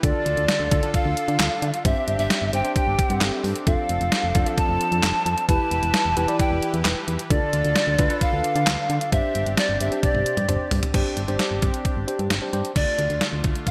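A detuned 8-bit drum machine sits up front in this driving, cool synth-pop excerpt at 132 BPM, its thumpy kick, medium-tuned snare, handclaps, hi-hat, crash and toms overdriven and treated with gated reverb, with a drum fill from 10.0 to 10.9 seconds. Above it, a crisp, chiffy pan flute carries a pure, expressive melody with vibrato and delay, while a worn, slightly out-of-tune tine electric piano accompanies until 12.7 seconds, and a brassy sawtooth pad with a filter sweep and chorus holds sustained chords. A punchy, round FM bass anchors the Dm, Gsus4, F6 and Em progression, all within a bright 1980s-style digital production with moderate plate reverb.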